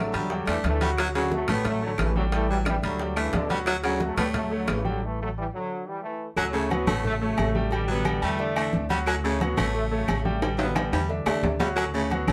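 An excerpt of sunny, joyful salsa at 178 BPM in D major opens with a bright, tightly voiced trombone section carrying the melody over clear concert grand piano, thumpy pizzicato upright bass, a raspy, gritty baritone saxophone second line, damped low congas, tight bongos and cowbell and ringing metal-shell timbales with agogo bells, while very quiet woody claves join at half a second, all in a modest live room, with a stop from 5.0 to 6.4 seconds before the trombones return with a fresh phrase and a drum fill arrives at 10.4 seconds.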